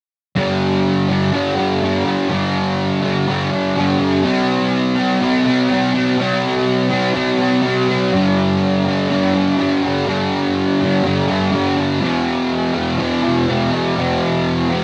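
A double-tracked fuzz guitar carries this short rock excerpt on its own, playing from 0.4 to 14.8 seconds with a bright, distorted, compressed tone placed up front in the mix. The picked part sits between F2 and C4, and an analog chorus colours the fuzz. It moves through the power chords G5, C5, G5 and F5 at a steady 124 BPM in a straight 4/4 feel. The mood is dreamy and melancholic. Light reverb and a digital ambience surround the guitar, and the overall production leans dark.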